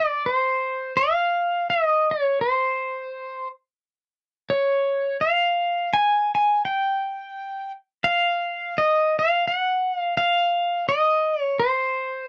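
The sound is dry and close, like a 1970s studio recording, with a light touch of reverb. This short Hawaiian piece, cut from a longer performance, drifts along at 85 BPM in 4/4 with a gentle swing on the eighth notes, and the mood is dreamy and languid. A lone electric pedal steel guitar carries everything from 0.0 to 12.3 seconds, playing solo between C5 and Ab5. Its clean, compressed tone sits up front, picked with fingerpicks and shaped by slide and volume swells. The result is an unhurried, floating line that feels suspended in a quiet, intimate room.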